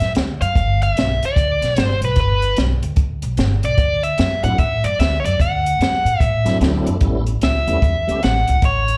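Laid-back and rollicking, this electric blues shuffle swings along at 149 BPM in 4/4, a short excerpt cut from a longer piece in D major. A biting, overdriven electric guitar carries the picked melody up front, colored by slapback echo and plate reverb. Beneath it, a woody, pizzicato upright bass with steel strings sits close and dark, while a compact cocktail drum kit gives a punchy kick, a high-tuned snare, hi-hat and a smooth, rolled-off top from a small room. At 4.4 seconds a full, lightly overdriven tonewheel organ slips in behind the band with slow rotary speaker, chorus vibrato, plate reverb and slapback echo, holding until 8.2 seconds. The chords move from D to G, then D7 and A7, and the whole performance is heard as a live club gig through the venue's PA with a light room reverb.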